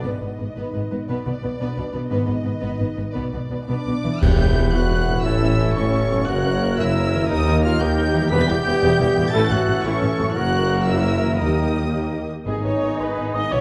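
A bright crash of triangle, clash cymbals and concert bass drum opens this heroic adventure film cue in 6/8. Beneath it, a lush symphonic violin section carries the melody over a distant chamber violin line, rich violas, expressive cellos with portamento, an even double bass section and very quiet, ringing harp arpeggios. At 3.7 seconds French horns add sustained chords and a mellow trumpet plays stabs, and at 4.2 seconds the full ensemble accents a shift in harmony with another percussion hit as articulate hard-mallet timpani, dark trombones, a vintage-toned tuba, a hollow flute, a clear oboe and a faint clarinet join, all in an adventurous, determined mood within a moderate concert hall and a warm production, with the timpani striking once more as the music settles home.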